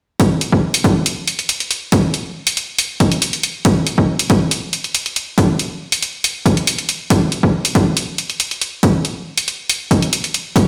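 Brooding and heavy, this short excerpt of deep dubstep moves at 139 BPM in 4/4 with a half-time feel. It is built entirely from drums: an electronic kick drum and an electronic hi-hat, both running from 0.2 to 10.6 seconds. The punchy, layered kick sits up front with overdrive and a high-pass filter shaping its weight, and it is the louder of the two parts. The hi-hat, also layered and overdriven, sits up front in the mix and adds a gritty edge above the kick. The whole thing sounds as if it is played on a big sound system in a bare room, with light stone-room reverb giving the drums a hard, echoing space.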